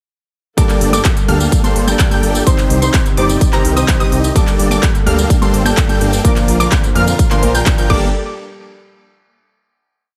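Festival progressive house at 127 BPM in G minor, this emotional, anthemic piece launches straight into a drop at 0.6 seconds, where a huge, euphoric supersaw lead carries a dotted-rhythm chord riff over a punchy four-on-the-floor electronic kick and a big-room kit of crisp programmed hats, clap, tambourine and crash, with a thick, menacing detuned saw bass joining off the beat at 0.8 seconds. Underneath, a warm grand piano plays dotted-rhythm chords in the background, a veiled, con sordino string section holds a very quiet sustained pad, and a lush, bright unison pluck doubles the chord part an octave higher, while sidechain pumping and digital delay shape the lead, pluck and piano, and the bass pumps too. The chords cycle through Gmadd9, Cm and Bb before everything stops at 8.1 seconds for a final hit, all set in light reverb.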